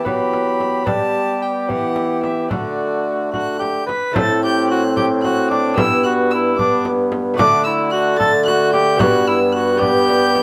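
A straight 6/8 metre carries this stately, courtly renaissance-style consort dance, cut from a longer piece, where a reedy, gut-string violin melody sits above a mellow, softly attacked cor anglais second line, while a punchy, clear trombone and a delicate, bright fingerpicked lute in the background accompany, a smooth-topped bassoon holds the bass, and a close, dry frame drum struck with hard hands supports the group inside a moderate stone-room reverb.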